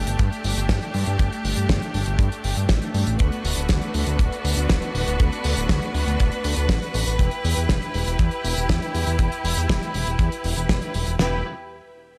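A bright symphonic string section and a fat analog bass open this danceable, melodramatic italo disco passage, cut from a longer piece. The bowed strings hold lush sustained chords with vibrato and a biting, intense edge, bathed in shimmer reverb. Beneath them the thick sawtooth bass sits up front, its fast attack and sustained tone shaped by a filter sweep. A damped 70s acoustic drum kit drives a straight 4/4 feel. One kit part carries airy, polished hi-hat and a fat snare through gated reverb, while the other delivers kick and a medium-tuned snare, both parts dry with rolled-off tops. The harmony moves from Gsus2 to D6 at 3.2 seconds and settles on Em at 7.2 seconds, with light studio reverb around the mix.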